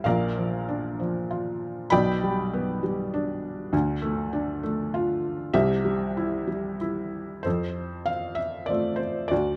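A felt-muted upright piano opens alone, soft and intimate, in a lyrical classical solo that drifts with rubato in 3/4 at 97 BPM in F major, its hopeful, sunny mood carried through chords moving from Bb through G/B, Dm and C to settle on F at 7.5 seconds. The piano spans from Bb1 to B5 with a mellow, muted tone, short sustain and audible action noise that keeps it close and up front. Detailed microphones capture it in a moderate recital hall reverb, and this brief passage, cut from a longer piece, ends at 9.6 seconds.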